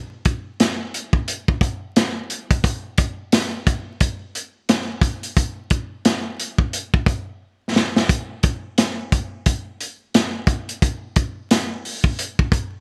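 A swung hip hop groove at 88 BPM in 4/4 opens this dark, tough excerpt, carried by a crunchy breakbeat drum kit of kick, snare and hi-hat that plays from 0.3 to 12.7 seconds, with a drum fill at 7.4 seconds. The kit sits up front, acoustic and saturated in a small room, its gritty, rolled-off top framing a tight kick and a medium-tuned snare. Light reverb, vinyl crackle and a bright 1980s-style digital production surround the beat.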